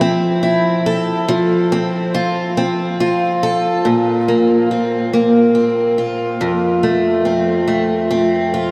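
A lone picked steel-string acoustic guitar opens on an Fmaj7 chord, its fresh strings and parlour body giving a warm tone placed up front in the mix. The pop piece sways gently in 6/8 with a straight feel, and the mood is heartfelt. At 3.8 seconds the harmony shifts to Bbsus2, then comes home to F at 6.4 seconds, with the guitar ranging from F2 up to A4. A subtle chorus shimmers on the guitar, while a huge ambient reverb with a very long tail soaks the whole sound in a dreamy haze. This short passage is cut from a longer piece.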